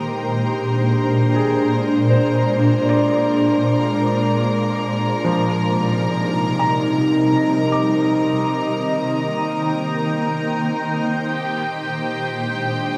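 A dark, reverb-soaked shimmer hangs over this weightless ambient excerpt in free time, where an up-front, detuned pad holds slow-attack chords from Bb9 through Cm11 and Eb6 back to Bb9, a clear studio violin section adds an earthy, bowed texture with light vibrato, and a felt-muted upright piano, mellow and intimate with audible action noise, drifts in the background with delayed arpeggios from 1.3 to 11.2 seconds.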